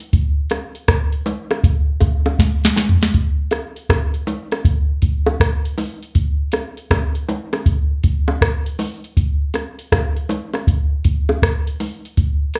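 A soft vintage analog rhythm box with a deep kick, crisp snare, rim click, toms and metallic hats sits up front in this sunny, uplifting reggae cut from a longer piece at 80 BPM in 4/4 with a swung sixteenth feel. Tight, high-tuned bongos carrying a slapback echo join at 0.5 seconds, and a drum fill runs from 2.4 to 3.1 seconds, all heard as a live gig through a club PA with light reverb.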